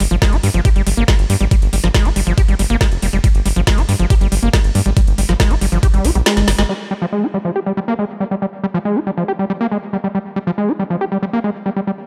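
A squelchy, gritty acid bass riff stands out in this psychedelic trance fragment, its resonant filter sweep, distortion, sidechain pumping and digital delay giving it an alien, up-front bite. Beneath it, a round, deep analog bass mixes sawtooth and sine tones into a dark, sustained foundation. An overdriven electronic kick with a knocking punch drives the straight drop, layered with a garage kit whose woody snare, metallic hats, crash and ride are overdriven and softened by low-pass filtering. The kick drops out at 6.3 s, and a drum fill at 6.4 s leads into a band accent at 6.6 s. From 6.8 s the acid riff carries on alone, trailing its delay through a light digital ambience.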